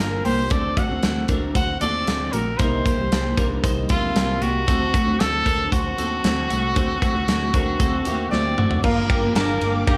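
A clear trumpet carries the melody from the first moment, touched with light vibrato and a slapback echo, over a picked steel-string acoustic guitar sitting in the background, a twangy twelve-string electric guitar spinning bright arpeggios through ensemble chorus and slapback echo, and a round, foam-muted fingered electric bass. This is a bittersweet, wistful slice of jangly indie pop at 115 BPM in a straight 4/4, cut from a longer piece and moving through Gm7, D7 and Cm7 chords. A big rock drum kit joins at 0.2 seconds, up front with a tight kick and a medium-tuned snare, and plays a fill just before a new section opens at 8.8 seconds back on Gm7. At that point a lush, airy sawtooth pad enters with slow-attack sustained chords, thickened by chorus and phaser. A crisp, very quiet group handclap flickers briefly near the end, and a light small-room reverb frames the whole ensemble.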